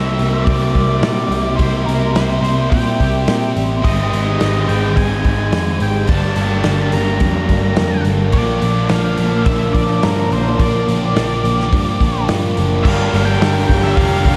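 A dark octave-fuzz lead guitar carries the melody through a diffuse ambient delay, floating over a warbling, lo-fi tape-like pad of sustained chords in this wistful, blissful shoegaze and dream pop excerpt at 107 BPM in C mixolydian, moving from C7 through Abmaj7, Gmadd9 and Bbmaj7 before settling on Gm7 at 12.8 seconds. Beneath them, three background electric guitars stack riffs: a thick fuzz part with analog chorus, a biting overdriven one with reverse reverb, and a tight, bright, double-tracked distorted one. A very quiet shimmering twelve-string acoustic picks octave-doubled arpeggios, a round, foam-muted vintage bass anchors the low end, and a loose indie drum kit with a tight kick and rolled-off top enters at 0.2 seconds, the whole mix soaked in a lush hall reverb.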